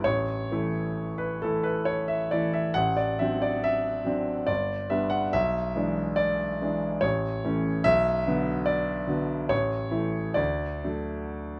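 In a flexible, rubato 3/4 at roughly 63-74 BPM, this romantic classical character piece in D major unfolds with a lyrical, hopeful mood across a brief 11.6-second passage cut from a longer work. A solo grand piano, smooth and vintage in tone, spans G1 to F#5, moving through harmonies such as D7/A, G, E7/B and Bm before settling on D at 10.4 s. Close, detailed microphones and a dry room keep the warm instrument up front and intimate.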